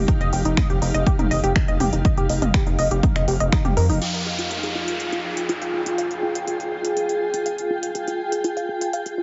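A heavily compressed, radio-like sound with its top end dulled and a light digital ambience frames this hypnotic, driving melodic techno excerpt in F minor at 122 BPM, where an overdriven electronic kick and a layered techno kit with smooth hats, snaps, toms and crash push the groove while a gritty, saturated synth bass and a very quiet analog drone hold the low end until around 4 seconds. Above them, a tight, detuned sawtooth arpeggio with chorus and delay pumps against the beat alongside a blurred, cloudy granular pad soaked in its own reverb. The kick falls away at 3.6 seconds, and at the 4.0-second change from Ebadd9/F to Fmadd9 the bass drops out, a downlifter enters, and a filter sweep reshapes the arpeggio through the close.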